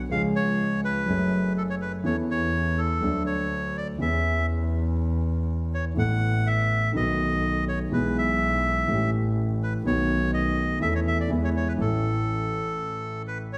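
Tango in A major at 123 BPM in 4/4, played with a rubato feel and an elegant, passionate mood, in an excerpt cut from a longer piece. A reedy, bright bandoneon carries the melody up front from 0.1 s, sitting between A4 and F#5. A concert grand piano accompanies with an intimate, vintage tone, deep bass and audible action noise, while a single bowed double bass, biting and nasal with light vibrato and an airy, earthy edge, holds the low end until 12.7 s. The harmony moves through colours such as F#madd9, Aadd9/E, E6 and B7 before settling from A/E through E to A, and a brief break arrives at 12.8 s. The whole ensemble sits in a recital hall with a reverb of about 1.6 seconds, giving the sound the spacious ring of a church or concert hall.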